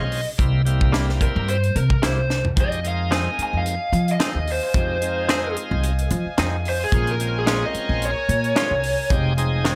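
Straight-eighth soul blues with a mournful, brooding mood, cut from a longer piece, where a dark, lo-fi overdriven lead guitar solos over a shouting tonewheel organ with key click and slow rotary speaker, twangy, scooped clean guitar stabs, a woody, thumpy upright bass, a tight funk drum kit with a high-tuned snare that plays a fill at 2.3 seconds, and a punchy horn section that enters at 2.6 seconds with sustained chords and light vibrato.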